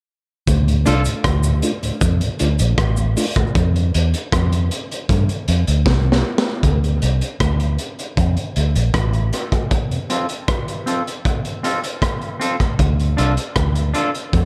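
Hypnotic and heavy, this dub reggae excerpt, cut from a longer piece, rides a straight, unhurried groove in four. A dark, foam-muted, round electric bass sits up front beside a saturated, gritty breakbeat kit with a punchy kick, high-tuned snare, rim clicks, hi-hat and a pumping room sound with a rolled-off top. A close, dry cabasa ticks in the background until 3.4 seconds, while a mellow, flute-like tonewheel organ with key click and slow rotary speaker drifts behind, filtered and trailed by dub echo. A picked, twangy guitar at the edge of break-up offers a brief stab near the start, then returns at 7.0 seconds with its own filtering and dub echo as the music moves into its second section. A break arrives at 9.7 seconds, and the production stays dark and warm, with light small-room reverb.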